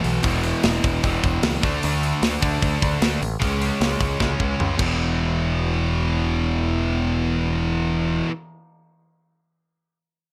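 A bright, high-gain distorted guitar drives this swaggering, energetic hard rock excerpt, playing a picked riff up front. Beside it, an overdriven semi-hollow guitar plays a riff of its own with a warm hollow-body tone colored by spring reverb. Underneath, a growling picked electric bass adds its own overdrive, sounding both direct and amped. A tight acoustic metal drum kit, recorded in a studio room with a medium-tuned snare and a tight kick, pushes a straight 4/4 feel with crash, hi-hat and toms, then plays a fill from 4.2 seconds and stops at 4.9 seconds. After that, the guitars and bass carry the second section alone over a power-chord progression of E5, D5 and C#5 that returns to E5, all within a light reverb.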